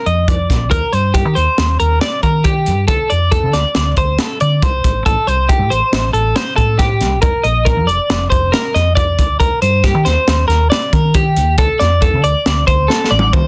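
A clean, compressed twelve-string electric guitar opens this bright, intricate math rock and midwest emo excerpt in Eb lydian at 138 BPM in 5/4, its up-front arpeggios ringing over a dark, round hollow-body short-scale bass and a crisp fusion drum kit with a high-tuned snare, tight kick and pumping small-room sound, moving through F7sus4, Eb, Dm7 and Am7 in a dry, dense, heavily limited mix before a drum fill at 12.9 seconds.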